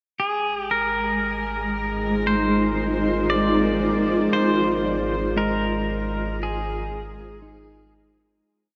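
A twangy, up-front pedal steel guitar opens the piece at 0.2 seconds, its slide lines and volume swells drifting in a free melody through shimmer reverb and a diffuse ambient delay in this serene, luminous ambient piece. Beneath it, a round sub bass fades in on a sustained root, a vintage analog drone warbles with chorus, and a granular cloud pad of blurred, detuned, slowly shifting chords blooms from 1.1 seconds. At 4.3 seconds a dark, clean electric guitar adds fingered arpeggios in slow loops of unequal length as the whole piece fades out into a huge, wet reverb.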